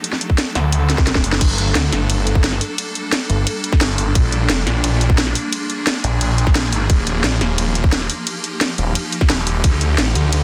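Aggressive and dark, this excerpt of technical drum and bass runs at 175 BPM in G minor, with a tight, up-front electronic kick and a layered kit of cracking snare, hi-hat, ride and crash driving a drop that resets after a drum fill at 0.9 seconds. From 0.6 seconds a snarling, growling saw bass, detuned and distorted with tube saturation and sidechain pumping, churns beneath a swarming, granular drone whose bright, evolving sustained chords move from Gmadd9 through Bb7 and Ebadd9 to D. The dense, heavily limited mix sits in a digital ambience.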